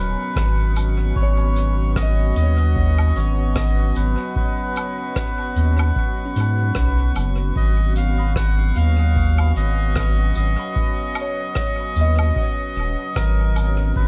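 Ambient dub at 75 BPM in G# minor, meditative and deep, resting on a single G#m7 chord as a reedy, breathy melodica carries the dub-echoed melody over a round, up-front sub bass, a moody detuned pad with chorus and reverb, a soft FM bell arpeggio in the background, and a drifting glassy harmonics texture, while a tape-warm electronic kick sits far back and a brushed vintage kit with hi-hat, rim click and woodblock, both entering at 0.4 seconds, swings gently inside a small room ambience.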